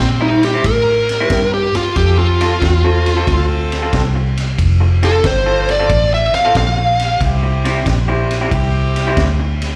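A swung 4/4 shuffle drives this rollicking, gritty electric blues, cut from a longer piece and heard as a live club gig through the venue's PA, with club reverb and small room ambience. A dark, up-front overdriven lead guitar carries the solo melody with slapback echo until 7.2 s, over a slightly broken-up, lo-fi riff from an electric guitar through a small old amp, a round, foam-muted fingered bass, and a vintage kit with punchy kick, high-tuned snare and dark ride cymbal. A tight, jazz-style horn section adds clear stabs from 1.9 s, also touched with slapback echo, as the harmony moves from C to F and back to C.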